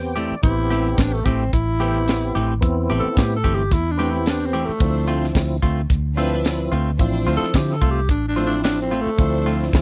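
A short organ fill opens this soul blues clip in A minor, its percussive tonewheel tone lightly overdriven and turning through a slow rotary speaker with chorus vibrato, as a dark, foam-muted fingered bass sits round and up front beneath it. A tight funk kit of hi-hat, high-tuned snare, tight kick and tambourine drives a straight-eighth groove at 110 BPM with a slight sixteenth-note swing, while a bright, twangy electric guitar at the edge of break-up punches in with compressed, picked stabs. The growling tenor saxophone carries the solo across the whole passage, breathy and raspy with subtone, scooped notes and vibrato, gritty yet smooth on top in a jazz style. At 4.8 seconds the harmony moves from Am7 to Dm7 and a rich, biting string section enters in the background with bowed, sustained chords. The mood is soulful and smoky, captured in a dry, close 1970s-style studio sound.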